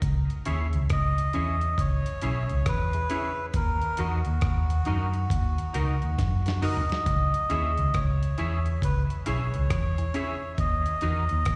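A dark, round muted bass and a gritty, sampler-style drum kit with a thumpy kick open this laid-back, hypnotic roots reggae excerpt at 68 BPM in C# dorian with a swung 16th feel, joined at 0.5 seconds by a clean, twangy electric guitar wet with chorus, tape echo and slapback, and a resonant, filtered dub chord stab swirling through a phaser, before a reedy, breathy melodica carries the tune up front in echo and plate reverb over a C# minor to D# minor vamp, with a drum fill at 6.2 seconds, all heard as a live gig through the venue's PA in a recital hall.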